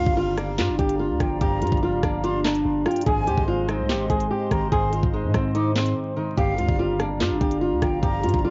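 A half-time drill groove at 145 BPM drives this dark, ominous hip hop excerpt in G phrygian, its up-front electronic kit pairing a knocking kick and sharp snare with crisp hats, rim clicks and handclaps over a deep, decaying sine 808 bass. A thumb-plucked flamenco guitar carries the melody up front while a breathy flute with vibrato and tape echo traces a second line above, a bright, ringing fingerpicked harp supplies accompaniment, and a hollow, detuned pad with chorus sustains chords moving from Gm7 to Ab and back. Cassette tape, vinyl crackle and light reverb give the home recording a dulled top, and a brief break at 6.0 seconds gives way to the return of Gm7 at 6.4 seconds.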